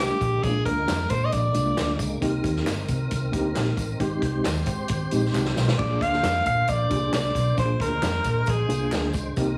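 Uptempo 1960s-style soul in Bb mixolydian at 134 BPM, warm and uplifting, where a breathy, up-front alto saxophone with vibrato and scooped notes plays the melody from 0.0 to 2.0 seconds and again from 5.8 seconds, over a reedy electric piano with fast tremolo, a full tonewheel organ turning through a slow rotary speaker, a round, foam-muted fingered bass, background handclaps and tambourine, and a vintage drum kit with dark cymbals and a punchy kick that plays a fill at 5.3 seconds, all moving through Bb7, Cm7 and Abmaj7 in a heavily compressed, radio-like small room.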